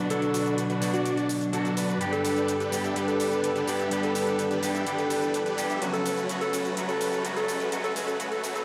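Heard through a big sound system in a bare room with large studio reverb, this euphoric, emotional festival progressive house build-up at 126 BPM layers a huge, detuned supersaw riff through a low-pass filter, a forceful, jazz-style alto saxophone melody with vibrato and tape echo, dark, clean picked semi-hollow electric guitar, earthy bowed chamber strings holding chords over Bm, G and F#m, and overdriven metallic electronic hi-hats with shaker, while a very quiet riser enters at 3.4 seconds.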